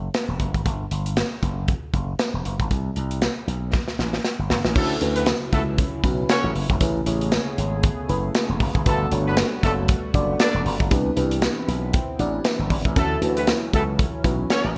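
Danceable and feel-good, this early-eighties boogie funk cut in D major at 117 BPM swings its 16ths over a growly, punchy slap bass through an envelope filter, an up-front studio drum kit with bright cymbals, and a jingly tambourine in the background, and after a drum fill from 3.7 seconds, at 4.8 seconds a tight, mellow horn section with octave doubling, a lush, dreamy FM electric piano with chorus and phaser (fill at 11.4 seconds) and a shimmering, retro pulse-width pad join over rich major-ninth chords, in a polished 1980s-style digital production with light reverb.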